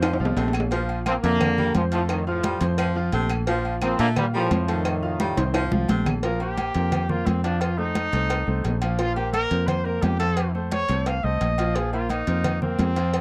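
A drum fill opens this sunny, festive salsa cut from a longer piece, as a bright, punchy trombone section carries the melody over a clear, roomy baritone saxophone second line, a polished baby grand piano, and a dark, round fingered electric bass up front. Congas, a tight high cowbell, ringing timbales with agogo bells, and woody claves sit in the background, with the claves dropping out around 6.2 seconds after another fill. From there a distant trumpet with vibrato takes a solo over shifting suspended and seventh chords, all in a dry, close 1970s-style studio sound.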